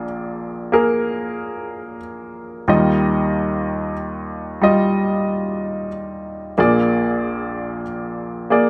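Intimate and nostalgic, this short folk passage in Eb major moves at an unhurried 62 BPM in straight 4/4, played by a solo baby grand piano across the full 8.7 seconds, ranging from Bb1 up to Eb5. The piano sits up front with a clear yet worn tone, short sustain and audible action noise, set in a moderate studio reverb of 0.7 s. The harmony rests on Bb7, settles on Ebadd9 at 2.7 seconds, and returns to Bb7 at 6.6 seconds, leaving the fragment suspended as if lifted from a longer piece.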